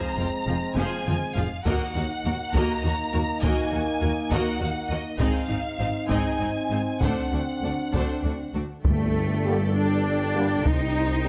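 Close, detailed microphones on a moderate scoring stage give this cinematic, epic orchestral cue a detailed presence with a 1.5-second tail of reverb, and the excerpt, cut from a longer piece, feels dark and relentless at 67 BPM in a straight 6/8. A lush violin section carries the melody between Eb5 and Bb5 with vibrato, while a second violin line sits distant in the background, expressive with portamento, and a clear, intense viola section fills out the accompaniment. Smooth, even cellos and background double basses anchor the bass from 0.2 s, as a mellow, roomy French horn section holds sustained chords over a harmony that moves from Fm through Ebm, Ab6 and D7. A taiko ensemble struck with heavy sticks drives the drums from 0.8 s, opening with a fill. At 8.8 s the music turns toward Gmadd9 and Cm, where a mellow solo tuba deepens the bass, soft-mallet timpani with round plastic heads sound briefly on G2, and a very quiet trombone section adds sustained chords from 9.5 s.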